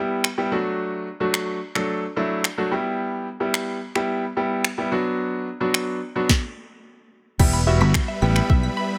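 Dance-pop in E minor at 109 BPM, energetic and bittersweet, this short excerpt opens with a brilliant, up-front concert grand piano pumping against an overdriven R&B drum kit of soft kick, sharp snare, finger snaps and crash over light reverb, until at 7.4 seconds huge, detuned supersaw chords, a punchy unison pluck arpeggio with tape echo in the background, and a round, foam-muted fingered electric bass arrive together on the return to Em.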